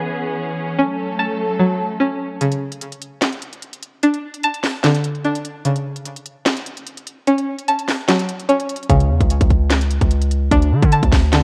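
Set at 148 BPM in 4/4 with a half-time feel, this dark, hard-hitting trap excerpt from a longer hip hop piece opens on muted, veiled string chords that sit at a distance and end at 2.4 s under a filter sweep. A twangy, string-like resonator pluck carries arpeggios through the whole passage, its bright, vintage tone colored by chorus, phaser, delay and a low-pass filter. At 2.4 s the trap kit arrives up front with a sharp snare, crisp hi-hats and handclaps, though its hard-clipped kick stays muted until 8.9 s. At that point a distorted, aggressive 808-style bass enters with heavy low weight alongside the kick. The harmony moves from C#m7 and F#m through chordless stretches and bare D5 chords, all wrapped in light reverb and a worn, warbly cassette-tape pitch drift.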